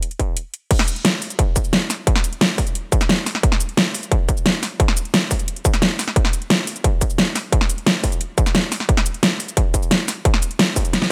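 A straight 4/4 drum and bass groove at 176 BPM drives this dark, futuristic fragment, with a dubstep drum kit of cabasa, crash cymbal, metallic hi-hats and a huge snare sitting up front from the start. A distorted, layered electronic kick drum joins at 0.2 seconds, and the drop arrives at 0.7 seconds, carrying through to a drum fill at 10.9 seconds. The whole passage sits in a digital ambience with a produced, electronic sheen.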